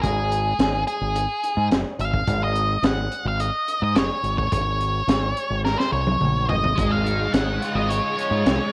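A dark, fuzzy octave lead guitar with slapback echo carries the melody up front from the start, over a growling, overdriven fingered bass and a gritty, saturated breakbeat kit with a punchy kick and high-tuned snare, setting a trippy, hypnotic psychedelic rock mood. After a drum fill at 5.6 seconds, the harmony moves from Absus4 to Dbadd9/Ab at 6.8 seconds. There a double-tracked overdriven guitar riff with flanger joins, along with a soft, vintage sawtooth string machine with cellos and ensemble chorus in the background. The whole short fragment sits in light studio reverb.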